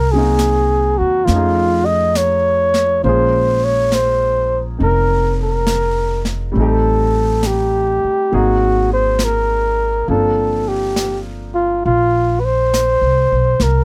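Tender and intimate, this slow jazz ballad excerpt at 68 BPM in a swung 4/4 sets an up-front, mellow flugelhorn solo with light vibrato and a soft attack over a woody pizzicato upright bass, an open, warm baby grand piano accompanying through chords such as Cm7b5, F7alt and Bbm9, and a studio-room brush kit on snare and hi-hat that joins at 0.4 seconds, all in a dry mix with little reverb.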